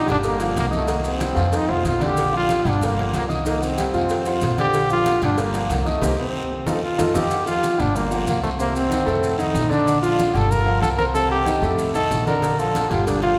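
A bright, punchy trombone with light vibrato carries the melody up front in this festive, sunny salsa excerpt at 187 BPM in Bb major, set over an intimate grand piano with audible action noise, a woody, growly pizzicato upright bass, very quiet low-tuned congas and ringing agogo bells and timbales, a raspy guiro, grainy maracas, and a very quiet round cowbell that drops out at 7.2 seconds and returns at 12.4 seconds, with brief drum fills, a band accent, and a wet church reverb on the whole mix.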